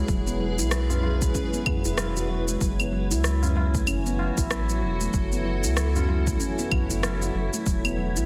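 A swung 16th-note groove at 95 BPM in 4/4 carries this warm, meditative organic downtempo excerpt in F# minor, where a deep electronic kick and an electronic shaker, rim click and claves, all overdriven and set in studio reverb, sit beside a high-tuned, short-ringing acoustic tabla in the background, while an up-front round, nasal analog bass pumps beneath a cloudy, evolving granular pad with its own built-in reverb and sidechain pumping, and a mellow stainless-steel handpan plays soft-fingertip arpeggios through delay over chords moving from E to F#m7 at 2.6 seconds and back to E, within a dense, heavily limited master.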